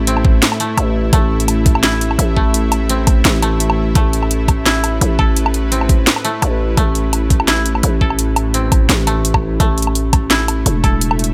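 A tense, nasal, string-like drone opens the excerpt on an A5 chord, its sustained sawtooth chords in unison carrying a noise layer, vibrato, a slow attack, long release, built-in reverb and sidechain pumping, while a woody, fingerpicked koto spells out arpeggios through a dub echo and a growling, buzzy 808-style bass sits up front beneath them. This is dark, cinematic half-time drum and bass at 170 BPM in 4/4 and A minor, with a light 54% swing on the sixteenths, and the whole passage plays as a drop cut from a longer piece. The drum kit arrives at 0.1 seconds with a cracking snare, bright hi-hats and woodblock, overdriven and placed up front, and an overdriven, knocking electronic kick joins at 0.2 seconds and drops out at 10.9 seconds. Both drum parts are layered and produced, re-recorded in a small room. The bass and drums dominate the mix over the quieter drone and koto, and the sound overall stays close, with little reverb.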